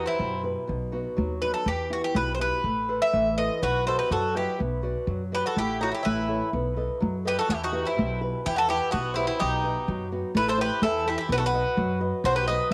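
A straight two-beat pulse gathers pace throughout this tense, dramatic Greek folk excerpt, as an up-front bouzouki carries the melody with bright, metallic double strings. A second bouzouki drops out at 0.4 seconds and returns at 3.6 seconds with a lower line, while a fingerpicked flamenco guitar adds accompaniment with audible finger squeak and a woody, pizzicato upright bass sits up front. The home cassette recording gives the bouzoukis and guitar a tape-worn character, and the whole band is bathed in moderate spring reverb.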